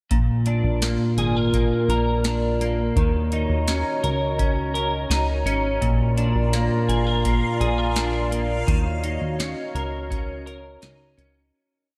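Soaked in a lush hall reverb, this short, hazy dream pop piece drifts in an ethereal mood, with a clean, twangy electric guitar up front playing a fingerpicked arpeggio roll through ensemble chorus and analog delay over a warbling, nostalgic, detuned lo-fi pad. Underneath, a plucky, round analog bass holds a dark, sustained line while a booming drum machine keeps a simple, spacious backbeat of deep kick, crisp snare and metallic hats. At 6.9 seconds a reversed, bright granular texture swells in briefly as the piece fades out from 8.7 seconds.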